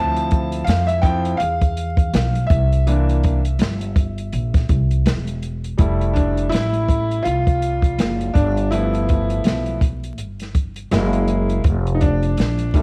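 Cool and smooth, this jazz-hop cut from a longer hip hop piece moves at 82 BPM in 4/4 with a 16th-note swing in F major. A clear upright piano carries the harmony from the start, with a woody, vintage tone and long sustain, soloing through both halves of the 12.8-second clip as the chords pass from Dm9 and C9 to Fmaj7, G13, Gb9 and F7(no3). Beneath it, a pizzicato upright bass with steel strings sits up front, dark and woody in its low register. The open jazz drum kit enters at 0.2 seconds with hi-hat, a medium-tuned snare and a boomy kick, its sound warm and rolled-off at the top as if in a small room. Piano and drums carry a cassette-tape character, while studio reverb and vinyl crackle give the whole home-recorded mix a lo-fi patina.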